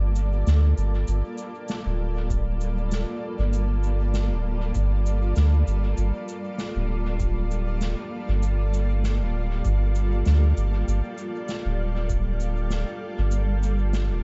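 This ambient dub fragment feels spacious and hazy, moving in 4/4 with a lightly swung sixteenth-note lilt. A cloudy granular pad holds sustained chords throughout, its detuned, blurred texture evolving with a bright sheen and its own reverb. Beneath it, a soft, round sub bass sits up front, deep and sustained from start to finish. Cabasa and a fat, big-room snare come in at 0.2 seconds, trailed by dub echo, while a very quiet, tape-warm electronic kick enters at 2.3 seconds and stops at 12.2 seconds. The whole mix is soaked in echo within a small room ambience, with its top end kept dark and muted.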